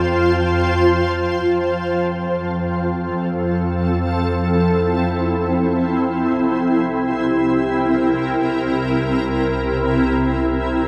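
Ambient music in free time and F major, luminous and peaceful, cut from a longer piece. A shimmering pad sits up front, holding detuned, granular chords with an octave-up sparkle, chorus and its own reverb, over a distant, bowed double bass section whose lush, vibrato-rich low notes lie beneath; the harmony drifts from Fsus2 to Fmaj7 at 1.4 s and C7 at 6.4 s. A glassy, barely audible glass harmonica glints only during the opening 1.4 seconds, and a long plate reverb bathes the sound.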